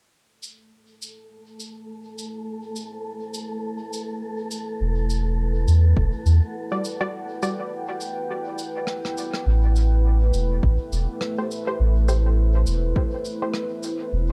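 A round, soft dub sub bass sits up front from 4.8 seconds in this hazy, meditative ambient dub fragment at 103 BPM in A dorian, beneath a deep, moody pad with chorus and reverb that fades in, an airy wind-like tuned noise texture, brushed cabasa and rim click with dub echo, an overdriven electronic kick that returns at 10.6 seconds, and muted, detuned chord stabs with chorus and dub echo, set in an echo-heavy small room ambience that moves from Am through Em9 to Am7.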